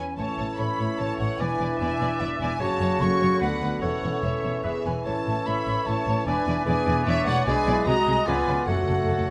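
Captured with close, detailed microphones in a moderate concert hall reverb, this excerpt from a fast, dramatic and restless romantic orchestral movement in A major at 149 BPM in 3/4 sets a very quiet, dark violin section melody beneath a hollow flute and a smooth violin section on the second line, joined by a bright clarinet and a warm oboe, while a clear bassoon and a rich viola section accompany, a mellow French horn section holds sustained chords, lush cellos and woody double basses carry the bass, and timpani with calf heads add a fill from 8.7 seconds over a closing turn through G#dim and C#7b9 to F#m.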